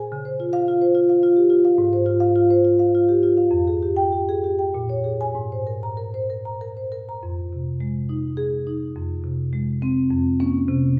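This is a contemporary classical piece for solo marimba, warm and flowing in mood, moving in a rubato 3/4 at roughly 95-109 BPM. The marimba, played with soft mallets on rosewood bars, has a woody, round and mellow tone with an airy quality, and it sits up front while spanning from F2 up to Bb5. The harmony opens in Ab major on rich colors such as Dbmaj7, Fmadd9 and Abadd9, then turns toward F minor at 7.2 s, settling on Fm7, Ab/F and a closing Db6/F. A wet recital hall reverb surrounds the instrument, and the listener seems to be placed further back in the room. This short passage, running to 11.0 s, is cut from a longer piece.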